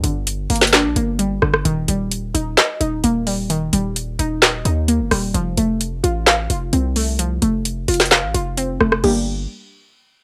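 Dry and close, with the colour of a home cassette recording, this brooding, melancholic trap cut moves with a half-time feel. A warbling, detuned pluck carries the chords from G minor through E-flat and F. Chorus, phaser, cassette-tape colouring and a filter sweep make it dusty and vintage, while a punchy sine-based 808-style bass hits hard and decays underneath. An electronic trap kit sits up front with a woody snare, metallic hi-hats, rim clicks, handclaps and crash cymbal, and the fragment ends just after the G minor chord returns at 9.0 seconds.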